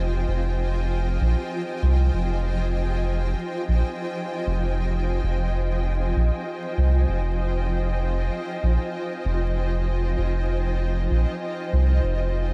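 Meditative and deep, this short excerpt of ambient dub moves at 97 BPM in a straight 4/4, resting in F minor on a single Fm9 chord throughout its 12.5 seconds. A granular cloud pad holds sustained chords from start to finish, its detuned, sine-based tone blurred and evolving, swelling in on a slow attack and trailing off with a long release inside its own built-in reverb. Beneath it, a soft dub sub bass sits up front, round and low with a fast attack and sustained notes that blend triangle and square wave character. The bass plays the whole length alongside the pad, anchoring the cloudy harmony with a steady, rounded weight. The room is dry, and a layer of vinyl crackle runs across the recording, adding a dusty texture to the calm, suspended mood.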